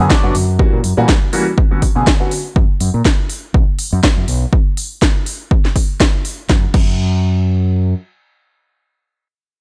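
A dry, gritty recording with little reverb puts every part up front in this joyful, feel-good slice of filtered disco house, which is cut from a longer piece. It moves at 122 BPM in 4/4 with a light swing on the sixteenths, opening on a drop that shifts through Bmadd9, F#7b9, back to Bmadd9, then F# and B5 before the chords fall away. A polished concert grand piano with deep bass and short sustain carries the accompaniment through a phaser and sidechain pumping, and it drops out at 2.3 seconds. Beneath it, a growling fingered electric bass, direct and amped, pushes through overdrive and tube saturation with its own sidechain pumping, holding on until 7.9 seconds. A punchy, overdriven analog kick drives the groove alongside a layered house kit with a cracking snare, crisp hi-hats and crash cymbal, the hats and cymbals pumping against the sidechain until the drums stop at 6.9 seconds.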